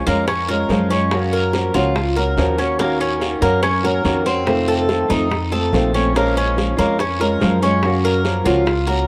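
Latin music in the Cuban son and guajira tradition, this short cut from a longer piece carries a warm, sultry mood in a straight four-four feel. Up front, an old ladder-braced acoustic guitar is fingerpicked for accompaniment, its dark, boxy tone marked by aged strings and a woody body. Beside it, the Cuban tres plays metallic arpeggios on its doubled, partly octave-doubled strings, colored by an analog delay. A thumpy pizzicato upright bass with steel strings sits forward in the mix, while tight, high-tuned bongos played with soft hands stay in the background of a small room, and a raspy, vintage, band-limited guiro scrapes along beneath. Light reverb surrounds the group as the harmony moves from Bbm7 through Gbmaj7, Ebm7 and F7 before returning to Bbm7 at 6.2 seconds.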